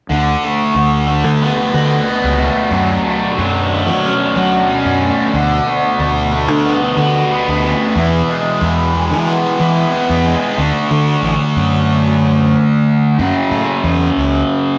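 A double-tracked fuzz guitar riff, distorted and up front with a phaser, opens this hazy, trippy rock excerpt in D lydian at 92 BPM alongside a dark, round, punchy overdriven fingered bass, while a calm, detuned organ-like drone with chorus sits in the background from 1.4 to 10.6 seconds, all in a rough rehearsal-room recording with a moderate stone room reverb and chords moving from D6 through F#m and E to a closing F#5.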